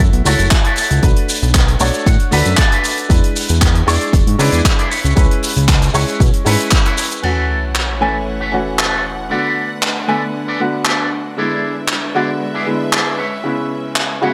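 A sensual, groovy nu-disco track at 116 BPM in F# minor opens with a sidechain-pumped baby grand piano with tape echo, a punchy electronic kick, a fat, detuned sawtooth bass and a tight funk kit of hi-hat, shaker, handclaps and crash, joined by a twangy, picked electric guitar riff run through an envelope filter, lush chorus and tape echo. Kick and bass fall away by 6.8 seconds, and at 7.2 seconds a sub drop arrives as a rich symphonic string section enters with biting, bowed sustained chords under light vibrato. The chords cycle through F#m7, Bm7, E7 and C#m7 in a small room with light reverb, and the passage is cut from a longer piece.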